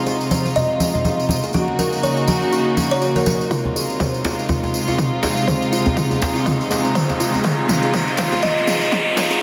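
A reedy chamber string section opens the recording up front, holding sustained Fm7 and Gb6 chords with light vibrato and a gut-string, period-style tone. A woody, hollow kalimba plays short, airy arpeggios beneath it, low-pass filtered and trailed by delay, with both parts pumping against the sidechain. This is driving, warm afro house at 122 BPM in F phrygian, with a 16th-note swing. Ringing, medium-tuned congas and a jingly, saturated tambourine carry the groove until the congas stop at 3.4 seconds. At 3.5 seconds a build-up and drum fill begin under a filter sweep. A deep, overdriven electronic kick sits in the background, layered overdriven electronic toms come in, and a deep acoustic djembe joins. An electronic riser enters at 6.5 seconds as the cut-off passage climbs, all bathed in a dreamy cathedral reverb.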